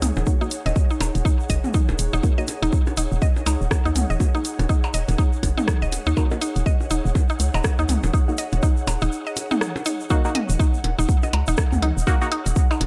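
Clinical and hypnotic, this minimal techno cut swings at a steady 4/4 pulse, built on a hollow, knocking FM bass that pumps against the punchy, up-front electronic kick entering at 0.3 seconds, with a house kit's warm hats and rim clicks, a grainy egg shaker, and electronic toms and blips echoing from a small room. A woody, mallet-like synth pluck riffs through chorus, phaser and tape echo while a muted, detuned dub chord stab undergoes a filter sweep, all above an ethereal, airy pad that breathes with the sidechain. After a brief break at 9.1 seconds, the groove drops back in at 10.1 seconds in a light reverb.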